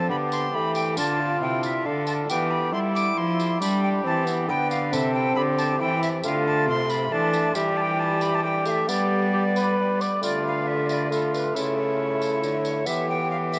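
Bathed in a huge, echoing reverb that suggests a vast space, this courtly yet rustic renaissance-style consort dance in triple time sets an airy, chiffy alto recorder melody above a mellow cor anglais second line, a warm bassoon accompaniment and a rich, reedy gut-string cello bass, with a jingly tambourine joining at 0.3 seconds.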